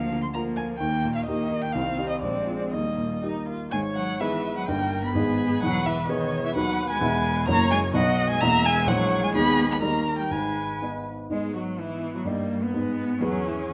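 A quick 2/4 pulse at 127 BPM, shaped with rubato, drives this graceful, lively classical-period movement for piano quartet, which opens in Eb major and turns to G# minor at 3.7 s. An expressive, up-front violin carries the melody with vibrato and portamento over a rich, intense cello second line, while a vintage-toned grand piano with short sustain and a soft-edged, distant viola supply the accompaniment. The four instruments play together from start to finish in this cut from a longer piece, set in a moderate recital hall reverb.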